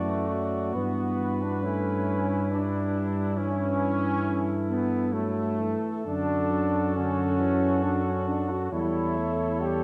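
In a slow, flexible triple metre, this serene, tender, hymn-like passage for brass band, cut from a longer classical piece, unfolds for 9.8 seconds. A mellow cornet with light vibrato carries the melody over a distant flugelhorn's second line, while a roomy euphonium sits in the background and a smooth-topped trombone section and dark tuba stand up front in the accompaniment and bass. The harmony moves from D/F# through Em/G and A7/G before settling back toward D/F# and ending on A7/E, all bathed in a moderate scoring-stage reverb.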